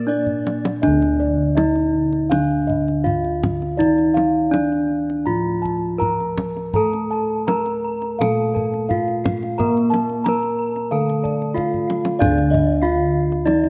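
Javanese gamelan in D pelog, this stately, shimmering excerpt moves in a straight 4/4 at roughly 79-96 BPM. A close, dry bronze metallophone struck with a wooden mallet carries the melody up front with a full, ringing tone, while a second metallophone on padded disc mallets plays a soft, mellow accompaniment lower down. Bossed gongs add bright, airy arpeggios above, and another set of gongs on padded beaters sounds a round, beating bass beneath. A darker metallophone with a horn mallet and paired tuning adds shimmering arpeggios in the background, heard at the very start and again from 6.8 s. A distant, hollow bansuri with gentle vibrato sounds a brief pure note at the opening, and the deep, hard-handed kendang, entering at 0.1 s, plays fills near the start and just before a new section at 12.2 s. A lush hall reverb surrounds this rough home demo mix.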